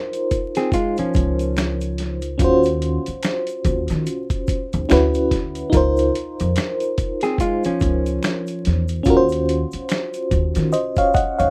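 Introspective, soulful neo-soul R&B at 72 BPM with a swung sixteenth feel, built on a warbling FM electric piano with tremolo over Db6 and Ebm9 chords, a gritty overdriven sampler-style drum kit with thumpy kick, snare, hi-hat and snaps, a background egg shaker and handclap layer, a growly pizzicato upright bass entering at 1.0 s, and a clean hollow-body jazz guitar appearing briefly at 0.6 s and 7.2 s, all set in a rough home demo mix with light reverb and vinyl crackle.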